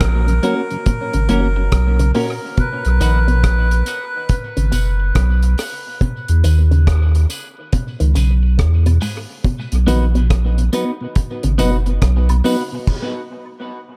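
Spacious and laid-back, this dub reggae excerpt at 70 BPM in B major rides a round sub bass and a dry, tight-kicked reggae drum kit up front, while a reedy, nasal melodica sings briefly until 4.4 seconds, a twangy clean guitar and an envelope-filtered guitar playing arpeggios drip with dub echo, a dark tonewheel organ with slow rotary speaker sits in the background, and tambourine and woodblock enter at 3.0 seconds before a stop at 12.9 seconds, all within an echo-heavy mix moving from F# to E to B.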